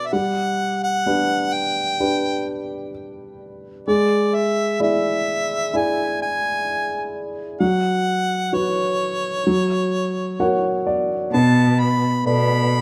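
A clear, jazz-tinged harmonica sings the melody with vibrato and scooped notes over a dark, woody upright piano with audible action noise and long sustain, both bathed in plate reverb, in this melancholic, heartbroken acoustic folk-pop ballad fragment that drifts from G through E7/G# and F#sus4 before a rich, smooth bowed cello enters at 11.3 s on a Bm7, all captured in a small room with the rough intimacy of a home demo.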